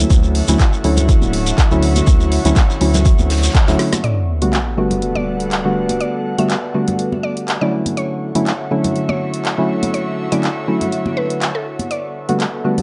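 A lightly swung 4/4 groove at 122 BPM drives this sunny deep house excerpt in G lydian, where a punchy up-front electronic kick, a round, deep analog bass and a grainy shekere fall away just before 4.0 s, when a sub drop impact ushers in a woody mallet-like synth pluck with tape echo and a filter sweep on the pad, while a layered kit with woody snare and dark hats, a very quiet acoustic soul kit, hard-hand congas, hollow organ stabs with analog delay, two breathy, pumping pads and a faint silky string machine fill out the dry, gritty hardware sound.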